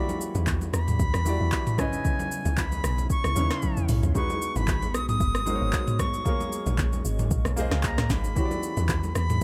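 Swung sixteenths at 114 BPM carry this soulful, deep amapiano excerpt, where an overdriven, up-front R&B drum kit with soft kick, sharp snare, handclaps, shaker and toms, plus a fill at 3.6 seconds, sits over a round, percussive log drum bass entering at 0.4 seconds, while ringing congas in the background, a polished grand piano and a very quiet, detuned sawtooth pad with chorus and phaser support a bright, reedy silver concert flute melody with vibrato and tape echo over chords moving from Em7 through C#m7, G#m7 and A#m7.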